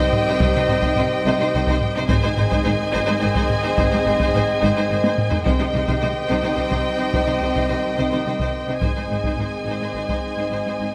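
Bathed in a wet scoring-stage reverb, this relentless, dramatic excerpt of an epic orchestral film score moves at 71 BPM in 6/8 in C minor, alternating between C minor and A-flat chords. Lush bowed violins carry a vibrato-laden melody over a distant, intense second violin line, a very quiet smooth viola accompaniment, and a low end of focused cellos and smooth double basses. Beneath them sit sustained chords from a background string section, dark soft-attacked French horns and punchy trombones, while mellow trumpet stabs cut through and close, dry taiko drums struck with hard sticks drive the music, with a drum fill at 5.0 seconds.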